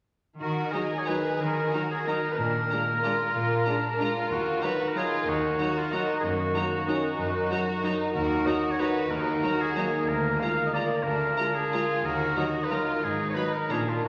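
This is a bittersweet, sweeping orchestral ballroom waltz in 3/4 and Eb minor. It moves at a rubato 170 to 201 BPM, tuned to A4 = 436 Hz and cut from a longer piece. A high, lush violin section carries the melody from 0.7 to 13.8 seconds, bowed with vibrato and sounding distant. Beneath it, an up-front solo oboe with light vibrato shares a clear second line with a smooth, even violin section. A ringing, thumb-plucked concert harp spreads arpeggios over a broad range, while a close viola section fills in accompaniment in the background and an intense cello section holds the bass. The harmony turns between Eb minor and Bb7, touching Abm7 near the end, and the whole ensemble sits in a wet scoring-stage reverb.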